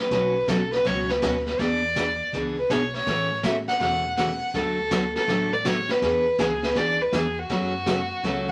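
Country western swing at 162 BPM with a swung, cheerful, down-home feel: this short cut from a longer piece puts a dark, sul tasto fiddle with light vibrato up front over a bright, full-bodied picked dreadnought acoustic guitar, a thumpy pizzicato upright bass and a small-room brush kit with a high-tuned snare and punchy kick, moving through Bsus2, E7, A6, D and F#m before a clean hollow-body electric jazz guitar sounds a lone F#3 at 8.5 seconds, set in moderate studio reverb with vinyl crackle.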